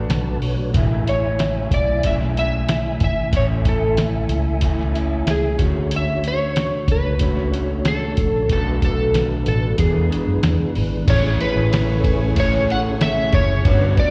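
Indie pop with a bedroom-pop haze, this nostalgic, laid-back fragment of a longer piece moves at 93 BPM in a straight 4/4 in A major, with chords drifting from Bm7 to Amaj7, Dmaj7 and E7. A mellow, flute-like tonewheel organ opens with a short fill, its fast rotary speaker, key click and cassette-tape grain adding a soft shimmer. Beside it, an electric guitar through a small old amp plays dark, slightly broken-up accompaniment with lush chorus, warbly pitch drift and slapback echo. Up front, a foam-muted fingered bass sits round and amped under a compressed, sampler-style kit with a thumpy kick, fat snare and tape-warm, muffled character. From 1.1 seconds an electric slide guitar carries the melody, its tone slightly broken-up and dark, coloured by analog chorus, slapback and tape echo. At 11.6 seconds a thick, detuned sawtooth pad rises softly in the background with chorus and phaser, and the whole is heard as a live gig through a venue's PA with recital-hall reverb.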